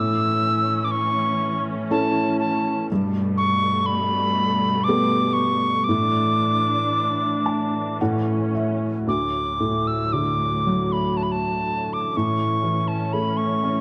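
In a free, rubato three-beat lilt, this wistful and tender Celtic slow air drifts along as a short section cut from a longer piece. A wooden whistle carries the melody up front, its pure tone marked by a crisp chiff, vibrato and rolled-off highs. Beside it, a felt-muted upright piano provides intimate, vintage-tinged accompaniment with a soft, smooth touch. The piano adds a fill from 6.9 to 9.1 seconds, leading into a second section. Beneath both, a muted studio string section holds sustained chords played con sordino, its veiled, dark ensemble sound bowed with a soft attack. The harmony moves from A through Gadd9 and Asus4, returns to A, shifts to D and comes back to A, all bathed in a moderate concert hall reverb and a dark, warm production.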